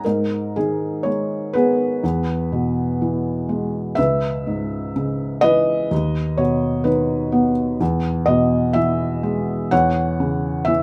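Dark and melancholic, this short classical excerpt cut from a longer piece features a lyrical solo piano in G# minor, moving at a slow 62 BPM in 4/4 with a loose, rubato feel. A felt-muted upright piano plays alone from 0.0 to 10.8 seconds, ranging from C#2 up to F#5. Its tone is soft and mellow, sitting up front and intimate, with the audible action noise of the instrument adding a close, private quality. The harmony moves from G#m through E and C#m7 to Badd9/D#, returns to E, and settles on C#m/E near 9.7 seconds. A light reverb gives the piano a gentle sense of space around its hushed voice.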